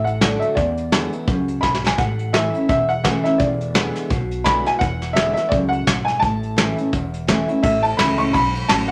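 A swung 4/4 beat at 170 BPM drives this short, upbeat rockabilly clip in A major, tuned slightly low with A4 at 437 Hz. An upright piano carries the melody in its upper register, its tone woody and natural with a short sustain. Beneath it, a picked dreadnought steel-string acoustic guitar with fresh strings fills out the accompaniment with a full-bodied sound and an audible finger squeak. A pizzicato upright bass on gut strings adds a dark, thumpy low end, while an up-front brush kit with a fat snare and punchy kick plays a drum fill from 1.6 to 2.0 seconds. The harmony moves from D through E7 to A, a new section arrives at 7.6 seconds, and a studio reverb gives the whole a retro room sound.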